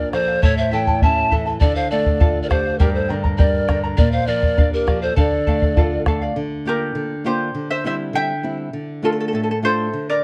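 A straight 2/4 pulse at 101 BPM, driven by a round, close and dry bombo up front, carries this earthy, wistful Andean folk fragment in D minor. An airy wooden pan flute with vibrato and tongued chiff leads the melody over a softer, hollow end-blown quena second line, while a shimmering double-strung charango and a small fingerpicked nylon-string guitar accompany. By 6.4 s the winds and drum have dropped away, and the charango takes a solo over the guitar, heard through a moderate recital-hall reverb with close, detailed microphones.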